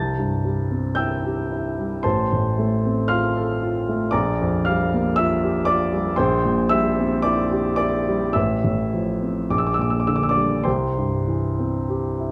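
Dreamy and tender, this short excerpt from a longer romantic nocturne for solo piano drifts at a slow 48-60 BPM in 4/4, its rubato feel letting the pulse breathe freely. A baby grand piano carries the whole piece alone from the start to 12.3 seconds, ranging from A1 up to A6 with a present, polished tone and long sustain that sits up front in the sound. The harmony moves gently from C through F/A, Gm7/Bb and C7/Bb, then circles back through F/A and Gm/Bb before settling on C near 10.7 seconds. A wet recital hall reverb with a 1.3-second decay surrounds the instrument, giving each chord a soft halo of space. The result is an intimate, lingering passage that feels like a quiet moment caught in the middle of a larger nocturne.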